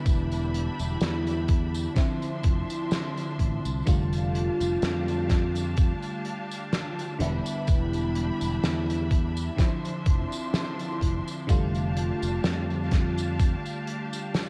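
Heard through a cassette haze and studio ambience, this woozy, faded vaporwave excerpt drifts at 63 BPM in F lydian, with a gentle swing on the sixteenths. Up front, a dreamy FM electric piano with a soft pad layer carries chords such as Em7, Dm9/F and F69, its fast-attack, decaying tones bathed in lush chorus and tape echo, while a bright, biting symphonic string section holds intense, vibrato-rich sustained chords alongside. A growly fingered electric bass with tube saturation and a thumpy, sampler-style electronic kick anchor the groove, joined by a loose indie drum kit whose fat snare, hi-hat and tambourine sit in gated reverb.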